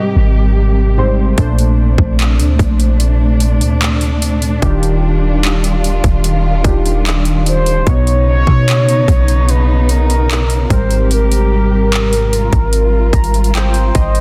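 Contemporary R&B at 74 BPM with a dreamy, tender mood, built on rounded, detuned analog keys with chorus, a dark, woody, lush string section pumping under sidechain, a deep, boomy 808-style bass up front from 0.2 seconds, an overdriven trap kit of hard-clipped kick, metallic hi-hats and handclaps arriving at 1.4 seconds, and a mellow horn-like synth lead with vibrato and tape echo that returns at 7.5 seconds, as major-ninth chords drift from Abmaj9 through Bbmaj9, Ebmaj9 and Bmaj9 in a dry, dense, heavily limited mix before a keys fill closes this cut from a longer piece.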